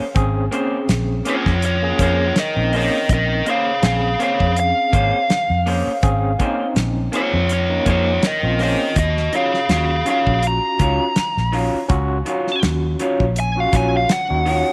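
An electric guitar through a small old amp opens this smoky, brooding soul blues with slightly broken-up, compressed, lo-fi stabs, alongside a dark, foam-muted fingered bass that sits round and up front. A gritty, barky electric piano with a medium tremolo fills in the accompaniment through a combo amp, while a dry 70s drum kit with a tight kick, medium-tuned snare, hi-hat and a rolled-off top keeps a straight-eighth groove with a light sixteenth-note swing. At 1.3 seconds a bright, biting lead guitar enters with a picked, overdriven solo that rides highest in the mix and carries the melody for the rest of the clip. The harmony rests on a minor ninth chord before moving to another at 9.0 seconds, deepening the moody atmosphere. A light reverb gives the parts a bit of space, and the clip is cut from a longer piece.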